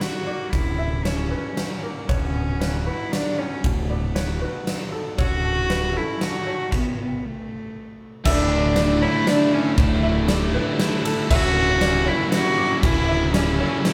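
A rich, bowed cello sings the melody up front in a hopeful, euphoric post-rock passage in waltz time, over a punchy arena drum kit with bright cymbals, a very quiet pedal steel guitar swelling on sustained chords, a muted, intimate felt piano with audible action noise arpeggiating in the background, and a clean, twangy electric guitar adding arpeggios until 7.2 seconds. A growling, overdriven fingered bass holds a low D underneath from 0.5 seconds, and the band drops into a brief stop before two overdriven guitar riffs, one crunchy and one from a cranked stack, surge in at 8.2 seconds. The group sounds like it is playing live together in a large studio room with moderate reverb.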